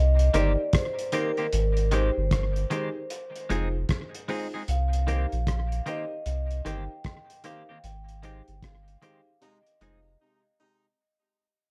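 A dark, lightly reverberant production frames this laid-back, hypnotic roots reggae excerpt at 76 BPM in C minor, swung on the sixteenths and fading throughout as it cycles through Cm7, Abmaj7 and Fm7. A round, deep sub bass and a muffled, gritty cloth-damped drum kit of kick, hi-hat and rim click sit up front, while a metallic, ringing vibraphone carries the melody through tape echo, a bright, twangy clean electric guitar accompanies through its own tape echo, and a woody, slightly detuned upright piano adds short stabs. The band hits an accent at 7.8 seconds, a faint, tight horn section slips in with a second line at 9.4 seconds, and a break arrives at 10.2 seconds.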